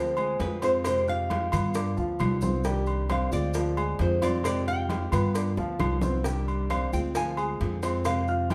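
A fingerpicked nylon-string guitar carries the melody from the opening moment in a nostalgic, sultry Cuban son and guajira groove at 133 BPM in 4/4. Beneath it sit a plugged-in steel-string acoustic guitar, fingerpicked in a concert style, and a dark baby grand piano whose mellow arpeggios hang with long sustain, while a thumpy, gut-strung upright bass plucks woody pizzicato notes up front. From 0.2 seconds the percussion fills in: ringing agogo bells and metal-shelled timbales, soft-handed congas in the background, grainy maracas and very quiet woody claves, with round low-tuned cowbell and bongos joining at 0.4 seconds. The harmony cycles through Dm7b5, Fmadd9, G7 and Cmadd9, and a drum fill sounds between 5.6 and 6.2 seconds. The classical guitar's playing carries some finger squeak, and the band sounds as if it is playing live together in a large studio with a moderate reverb. This short clip is cut from a longer piece.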